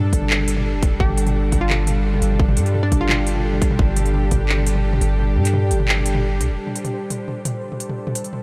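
Drenched in a huge, dreamy reverb, this cinematic, spacious excerpt of half-time drum and bass moves at 172 BPM in 4/4, resting on a Gsus2 chord. A string-like, tense sawtooth drone with vibrato holds sustained chords throughout, breathing with sidechain pumping, while a bright, pulsing gated texture shimmers in the background with chorus. Underneath, a deep, dark 808-style bass sits up front with long sine tones. A tight, tape-warm electronic kick and a produced kit of crisp hats, handclaps and toms play with small room ambience. A hollow, bouncy square-wave pluck enters at 1.0 seconds with a short chorused melody that trails into diffuse delay. The kick stops at 4.4 seconds, and the bass falls away at 6.6 seconds, leaving the drone, texture and kit to close the passage.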